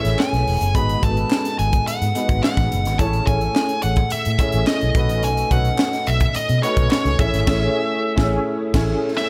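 A nasal, overdriven lead guitar with a parked wah sits up front and carries the melody in this glossy, upbeat snippet of polished 1980s jazz-funk pop at 107 BPM in 4/4. Around it, a clear concert grand piano with ensemble chorus and long sustain voices Amaj7, G#m7 and B9 chords, while a dark, foam-muted fingered electric bass with a round, amped tone holds the low end and a gritty fusion kit drives crash, hi-hat, tight kick and a high-tuned snare in a small, pumping room. Very quiet, close group handclaps appear from 0.2 to 7.0 seconds, and the band hits a shared accent from 7.5 seconds to the cut at 9.3 seconds, all framed by light reverb.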